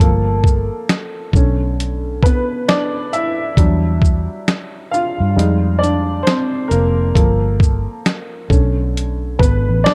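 A lazy, swung sixteenth-note groove at an unhurried pace anchors this hazy, reflective lo-fi hip hop excerpt, cut from a longer piece. A dusty, sampler-style drum kit sits up front with a thumpy kick, a medium-tuned snare, hi-hat and shaker, its compressed, gritty sound giving the beat a crunchy grain. Beneath it, a vintage fingered electric bass, foam-muted and amped, adds dark, round, punchy low notes from start to finish. The upright piano takes the solo throughout, a clear yet worn and woody voice, slightly detuned with short sustain, softened by cassette tape and a low-pass filter. Minor seventh chords drift through the progression, opening on Gm7 and moving through Bm7, Em7 and Fm7 before circling back, while light reverb and a cassette tape sheen give the whole mix a nostalgic haze.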